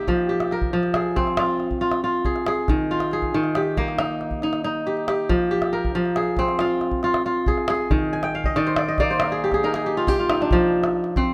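West African traditional string music in a flowing, reflective 12/8, where a bright, ringing kora sits up front with crisp fingerpicked arpeggios over Fm and Eb and adds a fill from 8.1 to 10.5 seconds, while a deep, compressed and saturated calabash adds percussion beneath in a close, detailed recording with light reverb, cut from a longer piece.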